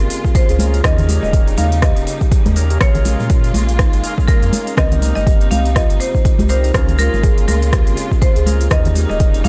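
Afro house with an earthy, hypnotic mood, heard here as a short cut from a longer piece, riding a swung sixteenth-note groove in four. A bright, woody marimba struck with hard mallets carries the melody over lush, bowed strings holding sustained chords, while a buzzing kalimba traces arpeggios through an analog delay, and smooth hi-hats and rim clicks tick along from the start. A round sub bass with tube saturation sits low and heavy, and the strings, kalimba, bass and organ all pulse with sidechain pumping. The deep, up-front electronic kick arrives at 0.2 seconds, and from 0.6 seconds close, damped congas and gritty overdriven organ stabs turning through a slow rotary speaker join the grainy egg shaker in the background. The harmony cycles through Db6, Eb7, Bbm7 and Cm7, and the whole mix carries a dry, gritty hardware character with transformer saturation.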